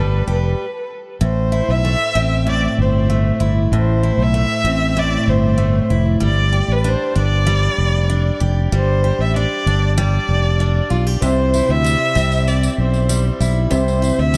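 A straight 4/4 pulse at 96 BPM drives this sunny, carefree acoustic pop passage, where a brief stop at 0.6 seconds interrupts a smooth, bowed violin melody with vibrato and a diffuse ambient delay, riding over a full-bodied, picked jumbo steel-string guitar and a round, punchy fingered electric bass, until a very quiet, woody upright piano and a jingly tambourine join at 11.2 seconds, inside light studio reverb.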